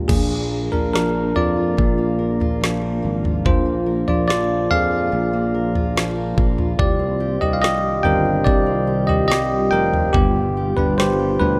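A heartbroken, emotional pop ballad moves at 72 BPM in a straight 4/4, heard here as an excerpt cut from a longer piece. A bell-like tine electric piano sits up front, clean and bright, and carries a solo from 0.1 s to the end while also supplying the accompaniment across a range from Eb3 to G5. Beneath it, a sustaining fretless electric bass growls with a direct, amped tone, and a smooth R&B drum kit with a knocking kick, woody snare, toms and crash cymbal sits forward in the mix with an electronic, produced character. A fingerpicked steel-string acoustic guitar plays full-bodied dreadnought arpeggios in the background, while a very quiet glassy FM pad holds ethereal, mellow chords with a slow attack, long release, ensemble chorus and its own reverb. The harmony moves from Bb to Cmadd9 at 6.8 s and on to G at 10.1 s, all set in a light digital ambience.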